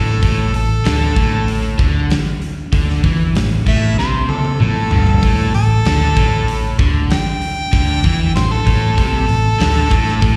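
A harmonica solo leads this driving, swaggering blues rock and southern rock excerpt at 96 BPM in a straight 4/4, entering together with a crunchy, double-tracked overdriven guitar riff with slapback echo, built around an A5 chord. The harmonica sings with vibrato and scooped notes, its punchy tone pushed by overdrive and slapback echo. A dark, round, foam-muted electric bass sits heavy in the mix, and a big rock drum kit comes in at 0.2 seconds with a fat snare and punchy kick up front, hitting a fill from 4.0 to 5.2 seconds. It sounds like a live gig heard through the venue's PA, with the room's recital hall ambience around the band.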